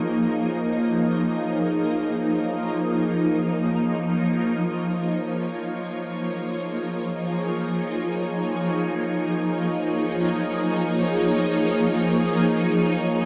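A shimmering pad opens the recording and holds alone for its full 13.3 seconds, drifting in free time with a weightless, luminous mood. Its ethereal tone blends detuned unison sine layers with an octave-up shimmer and a granular texture. Slow attacks and a long release let the sustained sound bloom and linger, spanning E#3 to C#5 over a single A#m7 chord. Chorus, phaser, built-in reverb and tape echo color the bright pad, which sits up front in the mix. A huge, wet ambient reverb surrounds it, and the production leans dark, tuned to A4 = 439 Hz, in this brief section cut from a longer piece.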